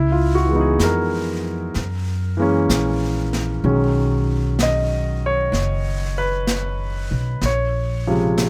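A slow swing at 63 BPM in 4/4 sets the pace of this intimate, wistful jazz ballad, with eighth notes gently lilting. A warm concert grand piano carries the accompaniment from the start, its natural tone reaching into a deep low register and sitting up front. An upright bass plays pizzicato alongside it, woody, warm and close, its steel strings sounding up front. At 0.8 s a jazz kit played with brushes joins in the background, its brushed snare, medium-tuned snare and hi-hat sounding as if in a small room. The harmony moves from C#m7 through F#9 to a lingering B69 before settling on A#m9, all under a light reverb in this short passage from a longer piece.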